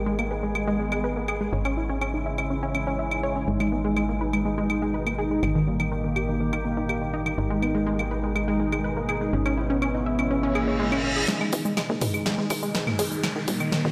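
A dreamy, reverb-soaked mix opens this dark, cinematic melodic techno excerpt, cut from a longer piece and moving at 123 BPM in 4/4 in G# harmonic minor. An evolving wavetable pad with a warbling, vintage, morphing character holds sustained chords under chorus, while a lush, detuned unison pluck spins arpeggios through a cassette tape effect and delay, its filter sweeping throughout. A tight, driving sequencer bass with a ring-modulated sawtooth edge sits on G#1, and an electronic house drum kit of claves, hi-hat, shaker, toms and a punchy snare plays in a small room ambience. From 3.5 seconds a thick, bold unison lead with a sub octave carries a delayed melody over chords cycling between G#m, C#m/G# and D#/G#. A reverse cymbal at 10.6 seconds leads into a build-up at 11.3 seconds, where a drum fill, a riser and filter sweeps on the lead and pad push toward a closing D# chord.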